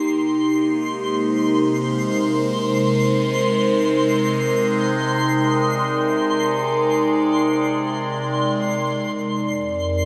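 This melancholic, reflective ambient passage unfolds in free time, opening with an evolving wavetable pad that holds sustained chords, its bright, morphing sine tone sitting up front with a slow attack, long release, phaser and its own reverb. Alongside it from the start, a twinkling granular texture sparkles high above, its FM tone carrying an octave-up shimmer that fades in slowly and lingers. The harmony rests on Abmaj9/C before moving to Fm9 at 9.1 seconds, where a round analog bass enters low and deep, its mellow square-and-sine tone wave-folded with a fast attack. The whole mix is dreamy and soaked in a lush hall reverb, giving the short cut from a longer piece a drifting, suspended quality.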